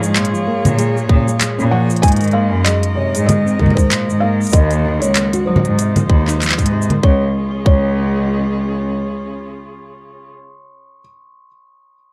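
Dark, lightly reverberant production frames this hopeful, pastoral folktronica fragment, where a soft, felt-muted upright piano with audible action noise carries the melody over expressive string-quartet chords with vibrato and portamento, thumb-plucked nylon-string guitar arpeggios in the background, a smooth, bowed cello bass up front, a mellow, bell-like glockenspiel second line struck with rubber mallets, and a crisp, tape-warm organic electronic kit of congas, handclaps, hi-hat and shaker, joined at 1.1 s by a tight electronic kick, all swinging gently in 4/4 until the organic kit stops at 7.0 s as the harmony settles on Db.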